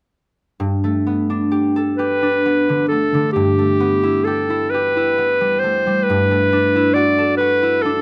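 A ringing, fingerpicked concert harp opens this pastoral, luminous fragment of an impressionist classical duo at 0.6 s, laying out Gadd9, Asus2/G and Em11/G harmonies in G major over a rubato 12/8 pulse of 44 BPM in dotted quarters, before a bright, up-front solo clarinet takes the melody at 2.0 s, both instruments heard close within a light reverb.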